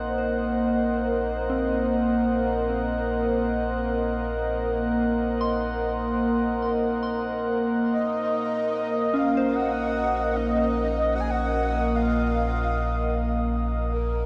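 A smooth analog pad sits up front with slow-blooming sustained chords in this melancholic, reflective ambient passage in free time, cut from a longer piece and moving from Ab7/Bb to Ebmadd9/Bb. Beneath it an ominous, wave-folded drone rumbles on a low Bb and a gentle FM bell warbles arpeggios in the background, both fading in across the whole excerpt, while an ethereal glass harmonica adds glassy texture high above. At 7.9 seconds a breathy, flute-like synth lead enters with vibrato to carry the melody, and the whole dark mix, bathed in a huge shimmering reverb, fades out from 12.2 seconds.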